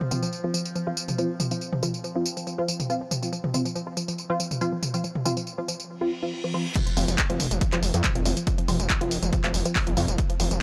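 A dry, gritty hardware recording with light reverb carries this hypnotic, intense slice of driving peak-time techno, where a very quiet, overtone-sweeping drone, a punchy analog drum machine of crash, handclaps, hi-hat, tambourine and toms with sidechain pumping, a woody wave-folded pluck riff in the background coloured by chorus, cassette tape and tape echo, and a muted, deep dub chord stab with phaser, analog chorus and analog delay are joined by a reverse cymbal at 6.0 s that leads into a drop at 6.8 s, bringing a layered, tape-tinged electronic kick and, from 7.0 s, an aggressive sawtooth synth bass pushed up front with transformer saturation and sidechain pumping.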